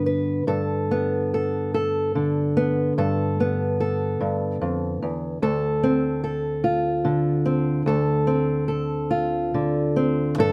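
A dark production with light reverb frames this brief, wistful folk fragment, where a solo fingerpicked old ladder-braced acoustic guitar sits up front with a woody, boxy tone and the sound of old strings. Moving freely in rubato around 49 BPM in 6/8, counted in dotted quarters, the guitar plays in D dorian and is tuned to A4 = 439 Hz, ranging from D2 to B4. The intimate passage rests on Gadd9 from 0.5 seconds before shifting to Dm7 at 5.4 seconds, and is cut from a longer piece at 10.5 seconds.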